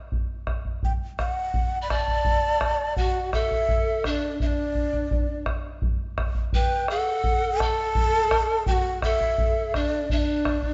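Earthy and melancholic, this short Andean folk excerpt at 84 BPM in 2/4 opens on a deep, saturated bombo, joined at 0.8 s by a hollow, close-miked large quena carrying the melody with vibrato and a crisp, chiffy attack, and at 1.8 s by a breathy, unsteady pan flute on a lower second line, all set in a wet recital hall reverb with a dark, softened top end.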